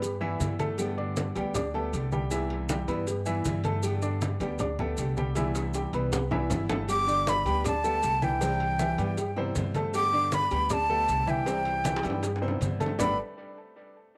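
A breathy, up-front jazz flute with vibrato and a soft attack carries the melody from 6.9 s in this relaxed, danceable Cuban son and guajira groove, over a full-bodied fingerpicked nylon-string guitar with audible finger squeak, a present baby grand piano playing arpeggios through tape echo, a woody, thumpy pizzicato upright bass, background layers of bright, damped congas and tight high-tuned cowbell and bongos, and grainy, close maracas, framed by moderate spring reverb and a small-room sound.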